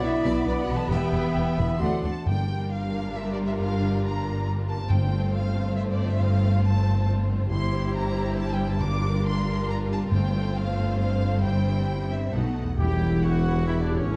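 Rich, bowed chamber violins carry the melody with vibrato over a second violin line in this adventurous, swashbuckling cinematic cue in G dorian, moving at 137 BPM in 3/4 and cut from a longer piece. Focused violas, a smooth symphonic cello section, a studio double bass section and a very quiet, ringing concert harp hold the texture throughout, while round, soft-mallet timpani sit intermittently in the background. Dark French horns, bright trumpet stabs, a very quiet trombone section and airy flutes sound at the opening and return at 12.8 s alongside a mellow clarinet and tuba, all within a warm production and moderate scoring stage reverb.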